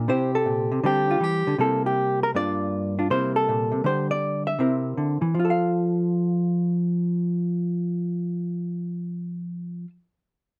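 A hollow-body electric jazz guitar opens this short solo jazz passage, cut from a longer piece, and plays alone from start to finish, reaching from G2 up to F5. The mood is relaxed and playful, set at 160 BPM in 4/4 with a swung eighth-note feel in F major. The guitar's tone is dark and clean, fingered rather than picked, with a compressed evenness that keeps it sitting up front in a light reverb. The harmony circles around C7, passing through D7sus4, Gm7 and Dsus4 before settling onto F at 5.3 seconds, where a new section begins. That second section runs to 8.3 seconds, and the guitar carries on briefly past it until the clip ends at 9.9 seconds.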